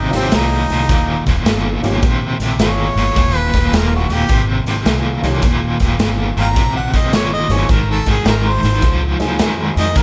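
A gritty, rollicking electric blues shuffle in Eb at 106 BPM opens with a bright, close-miked harmonica playing a jazz-style solo melody with light vibrato, tongue slaps and scooped notes, over a biting overdriven guitar riff with tremolo, a woody, growly pizzicato upright bass, a slightly detuned, worn upright piano comping in the background, and a raw, punchy garage drum kit of hi-hat, kick and snare in a pumping stone room, all moving from Eb9 to Ab9 at 7.7 seconds in this 10-second cut from a longer piece.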